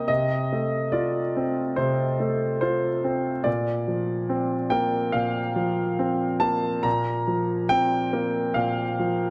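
Played with a rubato feel at 71 BPM in 4/4, this short excerpt from a longer neoclassical minimalist piano piece sits in Bb major and feels tender and hopeful. A solo concert grand piano, placed up front with a clear, natural tone, deep bass and long sustain, moves from an F/C chord to a Bbadd9 at 3.5 seconds across a range from Bb2 to Bb5. A moderate recital hall reverb surrounds it, and the production leans dark and warm.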